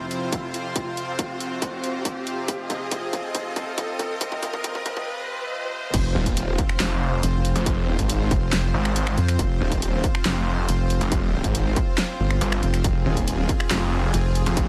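Dry, slightly lossy and high-passed, this heavy, chaotic half-time wobble dubstep excerpt in F minor at 139 BPM opens with a lush, detuned supersaw pad pumping under sidechain, a background riser and a drum fill of snaps, claps, bright hats and a huge snare over a distorted, tape-warm kick, until the drop at 5.9 seconds brings an impact, a saturated, chorused wobble bass up front and, from 6.2 seconds, a snarling, growling distorted saw bass.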